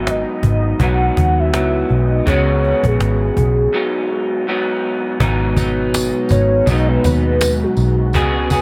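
A soft, round synth lead layered in octaves carries the melody through this lonely, hazy cut of indie bedroom pop, its dark triangle-and-sine tone colored by phaser, analog chorus and digital delay, and it takes a solo from 5.2 seconds after a brief break at 3.7 seconds. Up front beneath it, a slightly broken-up, lo-fi electric guitar through a small old amp plays fingered accompaniment with lush chorus and vibrato, while a foam-muted, amped picked bass anchors the low end and a snappy, close cajon keeps a lightly swung groove. A very quiet detuned sawtooth pad with a moving notch joins at 5.2 seconds and a jingly tambourine at 5.6 seconds, the mix sitting in a light small-room reverb.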